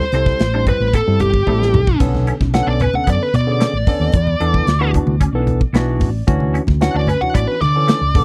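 An overdriven, bluesy lead guitar opens this short cut from a longer electric jazz fusion piece, soloing up front from the first second over a barky tine electric piano, a modern studio drum kit and low-tuned congas. At 112 BPM in a straight 4/4, the mood is intense and slick, with the distorted, picked solo riding a progression that moves from C6 through Bm9 to Dmaj9. The drums sound acoustic, with a medium-tuned snare and a tight kick, and they break into a fill between 1.5 and 2.0 seconds, while the congas sit thick-skinned and close in the background. A woody, round fretless bass holds the low end with a dark, amped tone, and a clean, compressed semi-hollow guitar adds bright stabs through an ensemble chorus, tucked behind the band. The electric piano accompanies clean through a combo amp and steps forward with its own fill from 5.5 to 6.3 seconds, all captured in a dry, close recording with a 1970s studio character.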